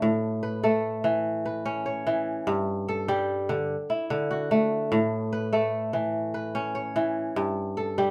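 A solo kora opens this short excerpt of West African traditional music, its fingerpicked strings sounding bright and ringing from the first moment. The mood is flowing and warm, moving at 98 beats per minute in 12/8 with a straight feel. The kora spans from a low G2 up to C#5 and sits up front in the mix, its crisp attack clear against a moderate small-room reverb. The harmony circles from A to G5, then through D and back to A before returning to G5 at 7.4 seconds. Captured live in one room, the recording lets each plucked note speak.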